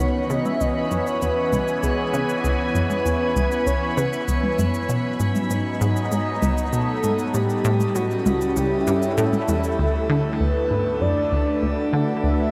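An expansive, hypnotic space-music piece in C# minor at 98 BPM opens with an evolving, warbling resonant pad holding lush chorused chords, a round, bright analog pluck riff with delay, and a bubbling stepped-filter texture sitting in the background. At 0.3 seconds a breathy, flute-like synth lead with vibrato enters alongside electronic cabasa and toms, and the harmony moves from C#m7 through G#m7 and A7 before the texture and percussion drop out at 9.8 seconds, leaving the rest over D6. A long shimmer reverb washes across the excerpt, which is cut from a longer piece.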